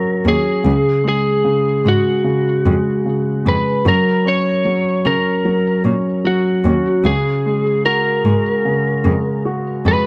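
A lightly driven electric lead guitar carries the melody up front, its picked, compressed tone slightly broken-up and sitting in a middle register. Beneath it, a baby grand piano plays the accompaniment with a clear, open sound and long sustain, also placed close to the listener. A single bowed cello takes the bass line from 0.3 seconds to 9.9 seconds, its rich, focused tone marked by vibrato and a smooth top. The harmony moves between F# and C#sus4 in a straight, unhurried pop ballad feel that comes across as emotional and tender. Light studio reverb and a dark, warm production wrap this short passage, cut from a longer piece.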